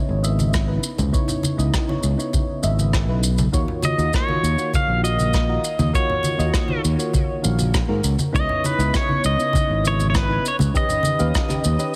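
Wistful and smooth, this 100 BPM sunset chillout excerpt in Eb phrygian drifts over Dbm9 and Ebm9 chords as round, mellow electric-piano-like synth keys with chorus, phaser and tape echo sit behind a growly, up-front overdriven fingered bass, a deep overdriven electronic kick, a brushed shaker and rim click with a rolled-off top, and bright, saturated congas in the background, until a clean, fingerpicked pedal steel guitar with tape echo enters at 3.8 seconds to carry the melody, all within a light reverb and a heavily compressed radio-like sound.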